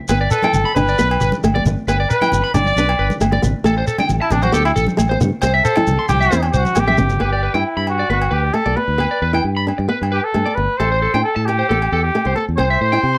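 Fingerpicked flamenco guitar with finger squeak, a twangy, slightly broken-up electric guitar playing arpeggios through analog delay, an up-front fingered electric bass, ringing agogo bells and a grainy shekere open this joyful, sunny highlife guitar-band excerpt in straight 4/4, joined at 0.3 s by a punchy, warm trumpet soloing with light vibrato and scooped notes and then by distant, damped congas, with the shekere and congas stopping at 7.2 s while the rest carry on in a small room's moderate reverb.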